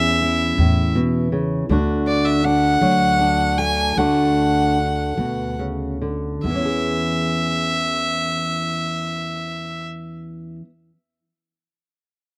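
Acoustic folk in a slow, hopeful 6/8 at 45-54 BPM in E mixolydian, this short piece from a longer work sets an up-front, nasal, lightly vibratoed bowed fiddle melody over dark fingerpicked steel-string guitar and a woody pizzicato upright bass, moving from E6 to D as the tempo slows between 1.7 and 6.5 seconds before settling back on E6, all heard close and dry in an outdoor setting.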